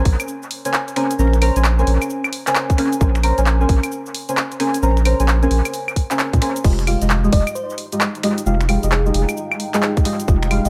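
An echo-heavy mix with light reverb frames this bouncy, late-night stretch of two-step UK garage, swung on the sixteenths. Dark, mellow chord stabs treated with chorus, phaser, 12-bit sampler grit and analog delay sit up front over a thick, saturated sub bass with sidechain pumping and a tight, layered electronic kick, while a dry analog drum machine scatters claves, hi-hat, shaker, finger snaps, handclaps and a crash cymbal through dub echo. A round, keys-like FM lead enters in the background at 7.3 seconds, followed at 7.7 seconds by a cloudy, evolving granular pad that drifts behind the groove.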